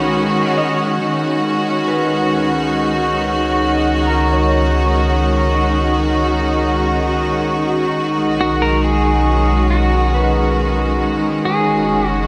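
Ambient piece at 69 BPM, peaceful and weightless, where a clear, up-front bowed string section holds sustained chords over a round, deep analog bass, while a ringing concert harp with delay plays arpeggios in the background alongside a drifting glass-harmonics texture with chorus, and a bright, twangy pedal steel guitar with delay sounds briefly at the start before returning with its melody from 8.4 seconds, all bathed in a wet cathedral reverb as the chords move from Cbadd9 through Dbsus2 and Cb to Gbsus2.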